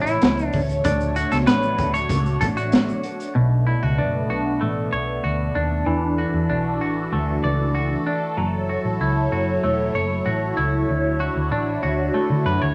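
A straight 4/4 pulse at 96 BPM drives this sunny, dreamy indie and bedroom-pop excerpt in D major, where a gritty, punchy garage drum kit with a high-tuned snare and a very quiet, grainy tube shaker play only until about 3.4 seconds beneath a clean electric guitar solo, while a dark, round short-scale hollow-body bass, a compressed semi-hollow guitar with warbly pitch drift, and a swirling, detuned sawtooth pad washed in phaser and chorus carry the chords from A and Dmaj7 through Bm9, E9sus4 and F#m7 to Dmaj9 in a wet small room.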